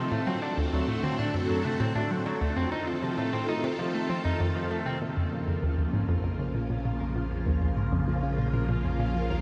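This ambient space-music excerpt opens on a chain of chords, D7 then F7, with a swirling, vintage phased string machine sustaining chords up front, a bright analog pluck riff in the low register with a detuned, round edge and analog delay, and a clean, picked electric guitar playing arpeggios through its own delay. Beneath them, a very quiet pulsing gated texture adds a tempo-synced, chorused shimmer. At a straight 98 BPM in 4/4, the mood is expansive and cosmic, and everything sits in a very wet, huge reverb with a long tail. At 5.0 s the harmony settles on B-flat minor, a deep sine sub bass enters on a low B-flat, and the guitar fades in over the closing seconds. The piece is cut from a longer work and ends at 9.4 s.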